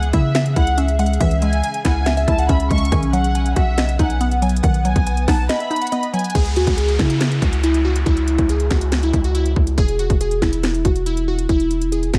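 A deep, mellow 808-style bass with long sustained notes sits up front beside a crisp, sharp trap drum kit with a hard-clipped kick, snare, hi-hat and finger snaps, driving this hard-hitting, melancholic half-time trap piece at 140 BPM in C# minor. Glassy, detuned digital keys with chorus, delay and a filter sweep carry the melody throughout, while for the first 6.3 seconds a dark, bowed studio violin section with vibrato adds a second line, a woody FM mallet pluck with chorus plays accompaniment, and a blurred granular cloud pad holds chords in the background. After a break at 5.5 seconds, an electronic downlifter enters at 6.3 seconds as the chords move from C#m toward Eadd9 in a dry, close mix.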